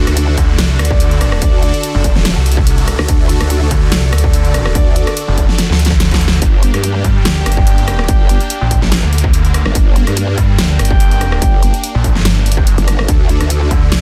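A dense, heavily limited and nearly dry mix carries this menacing, heavy wobble dubstep excerpt in G harmonic minor at 144 BPM in a swung half-time feel, where a growling bass with chorus and overdrive wobbles alongside a snarling, distorted sawtooth bass up front, a distorted electronic kick and an overdriven drum kit with a huge snare, bright hi-hats and rim clicks pound beneath lush, detuned supersaw chords pumping from sidechain, and a classical-style brass ensemble fires stabs with light vibrato through digital delay, as a drum fill at 5.6 seconds leads the harmony from D to G minor at 6.4 seconds before a D5 chord at 13.1 seconds.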